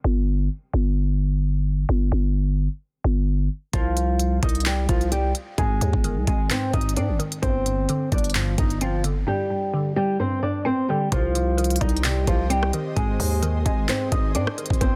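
Menacing and hard-hitting, this half-time trap cut in C minor moves at 130 BPM in 4/4, taken from a longer piece. A growling, buzzy 808-style bass opens it alone with fast-attack, decaying notes, and at 3.7 seconds a thumb-plucked flamenco guitar enters up front with audible finger squeak, its tone softened by a low-pass filter and trailed by delay, alongside an electronic trap kit of knocking kick, crisp hats, handclaps and rim clicks with a tape-warm edge. At 5.6 seconds a glassy, crystalline wavetable pluck adds nasal, chorused accompaniment with a filter sweep as the chords move from Cm through Ab to Gsus4. From 11.5 seconds an ethereal, airy pad of detuned unison voices with a slow attack and long release drifts in the background, mellow and bathed in its own reverb. The dense, heavily limited master keeps the bass, guitar and drums close and dry.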